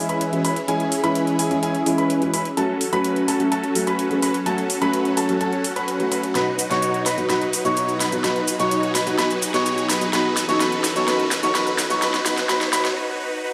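Anthemic and emotional, this festival progressive house build-up moves through C#m, F#m, B and A with a straight 4/4 drive. Up front, a huge, detuned supersaw riff carries the hook, its sawtooth unison tinted by phaser, tape saturation, low-pass filtering and delay, while a filter sweep runs across the whole passage. Beneath it a felt-muted upright piano adds soft, intimate accompaniment with delay, and a concert grand piano traces high arpeggios through a low-pass filter and delay. A lush supersaw pad with slow attack and phaser sits in the background, and a very quiet riser creeps in from 4.8 seconds. The layered, overdriven drum kit brings a huge snare, metallic hats and shaker, rolling into a fill at 6.4 seconds before a brief break at 13.0 seconds, all set in a wet concert hall reverb.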